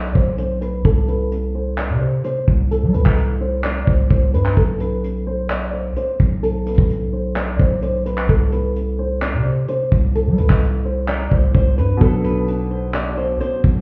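Heard muffled as if through a wall, with little reverb apart from a faint stone-room tone, this short cut from a longer hip hop and trap piece feels dark and menacing in a half-time groove. A fingerpicked flamenco guitar carries the melody, its acoustic tone shadowed by a low-pass filter and a digital delay. Beneath it, a long, sustained 808-style bass sits up front with a deep sine tone, fast attack and decaying tail. A vintage brush drum kit plays handclaps, hi-hat and a tight kick with a mid-forward, rolled-off top and gritty 12-bit sampler character, close and small-roomed. A filter sweep runs through the first 12.0 seconds, and the harmony moves between open, chordless stretches and C5 before settling on Bm. At 12.0 seconds a felt-muted upright piano enters with soft, intimate, short-sustained playing, mellowed further by a low-pass filter.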